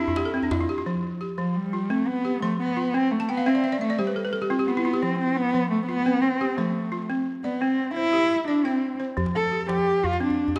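A dark, boxy bowed cello carries the melody up front, its expressive line shaped by vibrato, portamento and a soft attack, and it takes a solo from 0.9 s in this hypnotic passage of West African string and xylophone music in 12/8. Alongside it, a woody, buzzing balafon struck with hard rubber mallets sounds dry, full and close, spinning arpeggios and adding fills at the opening and midway. A tight, cracking djembe appears briefly at the start and returns at 9.2 s, all set in a moderate concert hall reverb within this fragment of a longer piece.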